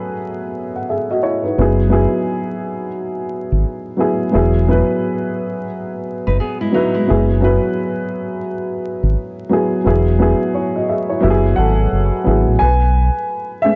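A worn, woody upright piano, slightly detuned and softened by cassette tape and a low-pass filter, opens this melancholic, reflective hip hop excerpt alone before a round, up-front dub bass enters at 1.6 seconds. Together they move through E, F#9sus4 and F#m9 in F# dorian at 87 BPM with a swung 16th-note feel. A bright, fingerpicked nylon-string guitar, filtered and touched with analog delay, appears briefly at 6.3 seconds; the bass drops out at 13.1 seconds over a B5 chord, all within a small room's light reverb and vinyl crackle.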